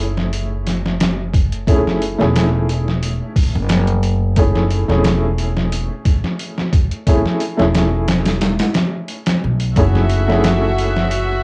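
A lightly reverberant home recording on cassette sets a dark, cinematic mood for this trip hop excerpt, moving at 89 BPM in 4/4 with a gentle 16th-note swing and resting on a single F#m7 chord in F# minor. The sampler-style drum kit sits up front, compressed, pitched down and muffled, with a thumpy kick, a medium-tuned snare and hi-hat roughened by overdrive, 12-bit grit and tape, as if re-recorded in a small room. Beneath it, a woody pizzicato upright bass on gut strings holds the low end with tube saturation, also placed close to the listener. A soft, felt-muted upright piano supplies mellow, intimate accompaniment with short sustain and audible action noise, coloured by tremolo, tape echo, cassette tone and plate reverb. At 9.8 seconds a bowed violin section enters with sustained chords, reedy and smooth on top, its light vibrato and period-style gut-string tone giving the final moments a faint string glow.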